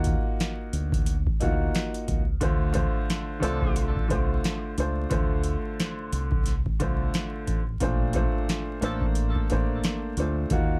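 This boom-bap hip-hop excerpt moves at 89 BPM in 4/4 with a swung sixteenth-note feel, sitting in Bb major and carrying a soulful, nostalgic mood. A booming analog drum machine sits up front, its deep kick, crisp snare and metallic hi-hats tape-warmed and colored by the sound of a small room. Beneath it, a dark, round fingered electric bass in a dub style lays a direct, amped foundation. A woody upright piano with long sustain, filtered at both ends, carries the chords from Ebmadd9 to Dm7 and on to Bbmaj9. An edgy saxophone section adds two brief, punchy stabs with vibrato at 3.4 and 8.8 seconds, filtered and touched with delay and set low in the mix. The recording is dry and layered with vinyl crackle, lending it an old-record feel.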